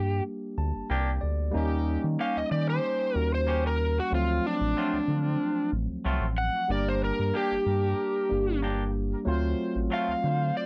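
A soulful, mournful blues at 93 BPM in straight 4/4 opens with an overdriven slide guitar carrying the melody up front, over a round, deep analog bass and a barky tine electric piano that plays a short fill at 0.3 seconds. A twangy, clean electric guitar enters with stabs at 0.9 seconds, and a brilliant, tight horn section with vintage vibrato holds sustained chords from 1.6 seconds, as the harmony moves through Gm, Eb7 and D7#9. The dry, close 1970s-style studio sound carries light reverb, and the passage is cut from a longer piece.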